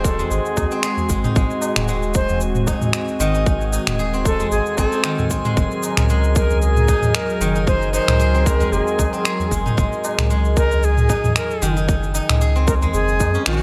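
Organic downtempo with a meditative, earthy mood, moving at 114 BPM in 4/4 with a light sixteenth-note swing, taken from a longer piece. A bright, reedy cedar flute carries the melody with vibrato and a soft attack, trailed by tape echo, while a steel-string zither played with fingerpicks spins silvery, ringing arpeggios through its own tape echo. Beneath them a smooth, detuned sawtooth pad holds sustained chords with chorus, and a deep, round sine sub bass anchors the low end, both pumping with sidechain compression. The rhythm comes from a tight, overdriven electronic kick and an overdriven electronic kit of finger snaps, shaker and toms, both re-recorded in a large room, with a high-tuned tabla sitting very quiet in the mix. A glassy texture of drifting overtones hovers far in the background on a single high note, the harmony moves from G#7 to F# at 5.6 seconds, and the full band lands an accent at 13.5 seconds under light digital ambience.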